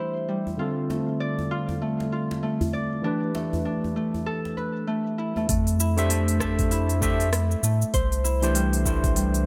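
A barky, overdriven tine electric piano, pushed up front with lush chorus, tape echo and sidechain pumping, carries the chords of this hypnotic, mystical organic downtempo excerpt at 98 BPM in 4/4 with a swung sixteenth feel, alongside a mellow, ringing Celtic harp playing arpeggios with tape echo and vintage 12-bit sampler grit. A smooth, low-pass-filtered deep house kit of hi-hat, rim click and shaker sits under them, with a medium-tuned djembe with metal rattles joining at 0.5 seconds. At 5.5 seconds, as the chords move to Fmaj7, the djembe gives way to a round, deep analog bass with tube saturation and sidechain pumping and a thumpy, gritty, tape-toned electronic kick, all under light reverb.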